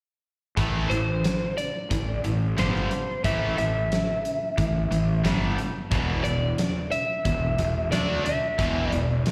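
Driving and aggressive, this hard rock clip, cut from a longer piece, kicks in at 0.6 s with two electric guitars, fuzz bass and a big rock drum kit arriving together. One guitar is biting and overdriven, colored by phaser and slapback echo, while a bright cranked stack guitar with overdrive and its own slapback echo sits in the background, both picking the riff. Up front, the fingered electric bass growls with fuzz, and the acoustic kit sounds dark and smooth, with a fat snare and a punchy kick. At 0.9 s a lightly driven lead guitar enters up front with a compressed, slightly broken-up melody, touched with slapback echo. The harmony holds on Am before shifting to E5 at 5.9 s, and the performance is heard as a live gig through the venue's PA, with light recital-hall reverb.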